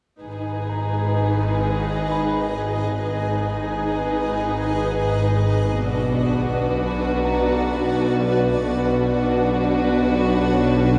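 Cinematic, uneasy and ominous in 3/4, this fragment sets a dark, woody violin section melody over an intimate chamber violin second line, a close sul tasto viola accompaniment and a bass line from a floating cello section and an intimate double bass section, while a tense, bright bowed-like drone with phaser enters at 1.1 s, a blurred, evolving granular cloud pad adds sustained chords from 1.6 s, and a very quiet, ringing concert harp supplies texture inside a wet scoring-stage reverb.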